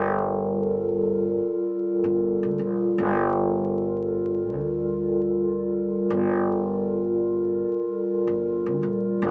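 Vinyl crackle and a small-speaker tone color this hazy, spacious ambient dub fragment, which is soaked in a huge, wet reverb with a 7.9-second tail. Cut from a longer piece, it moves at 77 BPM in 4/4 with a 58% swing on the sixteenths, sitting in G minor and tuned to A4 = 441 Hz. Up front, a warbling, tape-like pad built from square and triangle waves holds a single Gm9 chord from 0.0 to 9.3 seconds; its slow attack, long release, chorus and built-in reverb give it a dark, nostalgic, lo-fi glow. Beneath it, an upright bass with gut strings plays pizzicato low in the register, sounding woody and thumpy while sitting quieter in the mix. The two parts play together for the full length, creating a drifting, dusty atmosphere.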